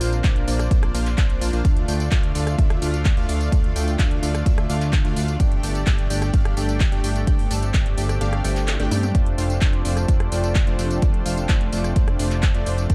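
Festival progressive house with a triumphant, anthemic mood, cut from a longer piece and built on a fat, sawtooth analog bass with ring modulation and a filter sweep. A punchy supersaw stab riff carries dub echo over a lush, airy pad holding sustained chords in the background, and all three pump against the sidechain through a dark, dry production. An up-front electronic kick enters at 0.2 seconds over a tape-warm house kit of handclaps, metallic hats, rim clicks, tambourine and toms that is already playing, then drops out at 8.2 seconds while a drum fill rolls in just before the chords land on F6 at 9.1 seconds.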